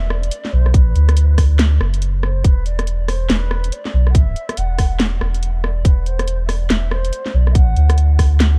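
A half-time groove in 4/4 drives this brooding deep dubstep excerpt, its sixteenths swung at 62% for a heavy, lurching feel. A soft, round sub bass sits up front from the start, deep and sustained with a fast attack. A garage drum kit enters at 0.1 seconds with a cracking snare, rim clicks and warm hi-hats, all layered and re-recorded in a small room. A tight electronic kick joins at 0.7 seconds, placed close and forward in the mix. Floating distant behind them from the opening, a hollow bamboo shakuhachi carries the melody with airy chiff and vibrato, its notes trailed by dub echo. The production is dark, warm and dry, with little reverb.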